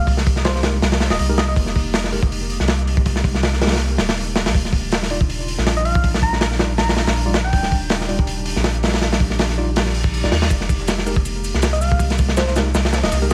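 This dark, nostalgic drum and bass excerpt with a jungle edge opens at 161 BPM on a warbling, detuned tape-like pad and a deep, round sub bass, with a gentle, keys-like FM synth lead sounding its melody in brief phrases between 0.0 and 1.5 seconds and again later, coloured by chorus, phaser and dub echo. Almost at once a crunchy breakbeat kit comes in up front, its saturated, gritty kick, snare and hi-hat carrying a rolled-off top and a light 16th-note swing. From 0.6 seconds a worn, slightly out-of-tune tine electric piano adds mellow stabs with dub echo, sitting back in the mix alongside the lo-fi pad. The harmony moves from Fm11 to Ebmaj9 at 4.5 seconds in F dorian, and an electronic reverse cymbal sounds in the background just before the return to Fm11 at 10.5 seconds. At that point a compressed, sampler-style second kit of snare, hi-hat and shaker joins faintly behind the main drums, thinned by high-pass filtering and set in a large room, all beneath a small-room ambience of vinyl crackle.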